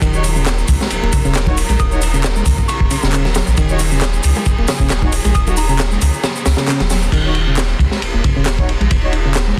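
Swaggering and gritty, this breakbeat cut at 135 BPM in Eb minor rides a punchy, saturated breakbeat kit with dark cymbals and a high-tuned snare, layered with an overdriven house kit of bright hats, handclaps and shaker, very quiet bongos and congas, and a deep, thick sub bass under a worn, reedy electric piano riff treated with overdrive, 12-bit grit, low-pass filtering and delay. In the background, lush bowed strings hold sustained chords that pump against the sidechain, smooth-topped brass stabs carry filtering and delay, and a soft, warbling FM bell melody with chorus and sampler grit appears from 1.8 to 5.8 seconds. The kick drops out from 6.2 to 7.1 seconds, with a band accent landing at 6.7 seconds inside that gap. At 7.1 seconds the strings stop as the harmony shifts from Ebm7 to Eb7(no3) and a filter sweep runs on the brass, all within a dense, heavily limited, dry mix.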